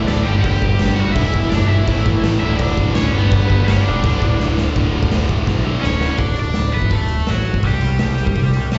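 Energetic and rowdy, this short punk rock excerpt charges along at 167 BPM in a straight 4/4, sounding like a live gig heard through a venue's PA with a recital-hall reverb and a muffled top end. A bright, overdriven cranked stack guitar carries the melody from start to finish, treated with slapback echo, while three riffing guitars sit beneath it: a bright distorted guitar and a tight distorted guitar, both picked and echoed in the background, and a dark, double-tracked overdriven guitar that stays very quiet. Those three riffs drop out at 6.2 seconds, leaving the lead guitar, bass and drums to finish the final stretch over chords moving from D to C5. Up front, a growling picked bass with an amped, overdriven edge drives the low end, and a raw garage drum kit with a punchy kick, medium-tuned snare, crash and hi-hat sounds gritty and saturated, its top rolled off. Drum fills at 4.4 and 5.5 seconds mark the turns between sections, as the harmony shifts through G5, Em, A5 and D5 along the way.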